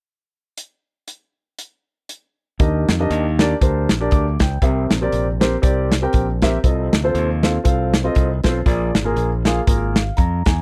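A dry, close recording in a 1970s studio style carries this jubilant, uplifting slice of uptempo gospel with a swung feel. An airy, polished drum kit with a tight kick and a medium-tuned snare opens alone, before an intimate grand piano, with audible action noise, a natural tone and long sustain, and a bright fingered electric bass enter together at 2.6 seconds. The chords move from Ebmaj7 through C7 and F7/C to Bb7, and the piano closes with a fill at 9.9 seconds.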